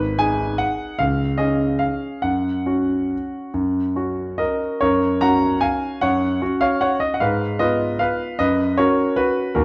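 A lilting three-beat waltz pulse moves with free, rubato timing through this short classical piano piece, cut from a longer work. A lone concert grand carries everything from start to finish, its tone smooth and vintage, with a deep bass reaching down to G#1 and a treble rising as far as A#5. The mood is bittersweet and wistful, as a minor chord gives way to brighter harmonies, and the opening phrase returns at 4.8 s before a diminished chord near 7.2 s darkens it briefly on the way home. The piano sits up front in a moderate recital hall, whose 1.2-second reverb adds a soft halo, and the production leans dark and warm overall.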